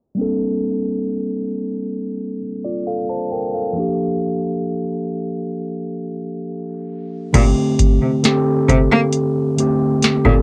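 A mellow tine electric piano opens this sensual, late-night contemporary R&B fragment, cut from a longer piece, laying down Bbmaj13 and Gm7 chords at a slow 67 BPM in straight 4/4 through a filter sweep that runs until 7.3 seconds. Its clean tone sounds as if played through built-in speakers and carries a cassette-tape character. At 7.3 seconds the music returns to Bbmaj13 as a rich cello enters to carry the bass line, bowed by one player with vibrato, soft attacks and expressive portamento. Alongside it, a booming analog drum machine arrives with a deep kick, tonal snare, metallic hi-hats and crash cymbal, also coloured by cassette tape. The piano, cello and drums all sit up front, while light reverb and a low-pass, home-cassette sound give the whole recording a hazy intimacy.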